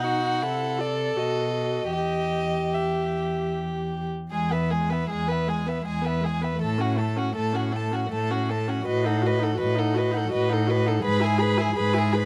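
A dark, close cello sits up front, holding the bass between E2 and C3 with light vibrato and a soft attack, its bow drawn sul tasto for a smooth, intimate top. Above it, a single violin carries the yearning, elegiac melody from D5 to B5 in a woody, vibrato-laden voice, while a second violin floats a pure, up-front second line and a viola adds an airy, softly bowed accompaniment. This is a slow romantic movement for string quartet in 3/4, moving with rubato at around 74-84 BPM, and all four players bow over the fingerboard throughout the 12.3 seconds. The opening phrase rests in E minor, passing through Am/C and B7 to Em, before the music brightens into E major at 4.3 s and continues through F#m/A and B7/A to E/G#. Detailed microphones and light reverb keep the intimate quartet sound close, in a passage cut from a longer piece.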